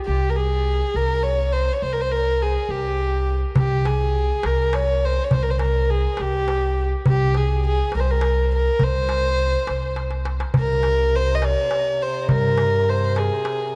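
A dark, warm recital-hall sound with moderate reverb frames this melancholic, longing Arabic maqam ensemble excerpt, moving at 69 BPM in a straight 6/8 and shifting from C maqam hijaz to C maqam bayati at 10.6 s. Up front, a dark violin carries the melody with light vibrato, soft attack and an airy, intimate sul tasto bow touched by tape echo, while a woody pizzicato upright bass holds the low end. A crisp metal-shell darbuka struck with hard hands enters at 3.6 s, and a mellow, folk-style duduk adds a quiet vibrato drone on C from 10.5 s.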